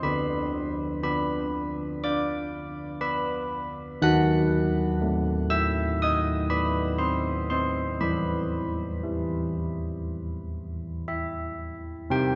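Solo carillon bells ring out in bronze, dark tones with an iron clapper and a minor-third overtone, spanning D3 to F#6 in this solemn, wintry classical church-bell tune at 60 BPM, moving from Bm/D to D#dim7 at 4.0 seconds and E5 at 8.0 seconds, heard from far back in a cathedral with a long 5.5-second reverb and softened highs in a short section cut from a longer piece.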